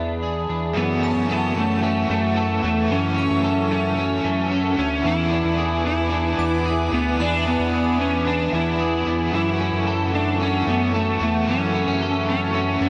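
A dark, overdriven slide guitar carries the melody up front in this haunting, melancholic dream pop excerpt at 112 BPM in F# minor, entering at 0.8 seconds over a fat, detuned sawtooth bass and a warbling, lo-fi tape-like pad holding sustained chords. An electric guitar at the edge of break-up picks arpeggios through analog chorus and diffuse delay, while a bright overdriven guitar with tremolo sits in the background and a shimmering FM bell adds a faint halo from 1.0 to 8.0 seconds. The chords move between F#m7 and E7, and the whole mix is soaked in a lush hall reverb with a dreamy, softened top end.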